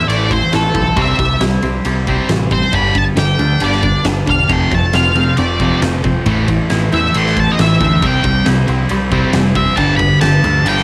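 A dark octave-fuzz lead guitar solo sits up front from the first moment of this anthemic, restless quiet-loud alternative rock excerpt at 136 BPM, its distorted melody carrying tape echo over an Am, C, G, F progression, backed by a bright overdriven riff guitar, a clean, twangy arpeggiated guitar with subtle chorus in the background, a growling overdriven bass with a punchy attack and a huge arena drum kit with a fat snare and punchy kick in a big room, before a thick fuzz guitar joins the riff in the background at 4.5 s, the whole piece heard as a home cassette recording with light reverb.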